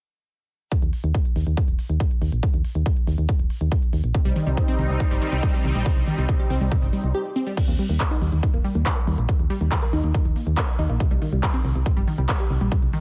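Uplifting trance with a euphoric lift, this excerpt drives a straight pulse from a punchy, overdriven electronic kick up front, with a big-room kit of crisp hats, handclaps and crash cymbal, the hats and cymbals pumping under sidechain, while a round, dark FM bass punches beneath with fast, decaying notes. At 4.1 seconds a lush, detuned unison pluck enters with bright, wave-folded arpeggios soaked in diffuse ambient delay, alongside an evolving supersaw swell of sustained chords through analog chorus that ends at 7.1 seconds. A brief break then gives way to a new section at 7.6 seconds, the pluck, bass and drums carrying on in a digital ambience.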